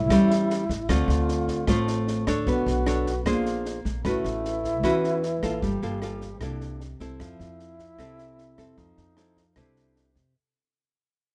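Bathed in light reverb and fading out across its full 10.4 seconds, this short cut from a longer bossa nova has a romantic, sophisticated air. An up-front nylon-string guitar, fingerpicked in a classical manner, carries the accompaniment through chords such as Bm9, Bb9 and C13 before settling on Fmaj7, while a woody, thumpy pizzicato upright bass and a dry compact cocktail kit with a high-tuned snare, punchy kick and rim clicks sit beneath it. A wooden-headed alto flute adds an airy, tongued second line with vibrato and a slightly unsteady quality.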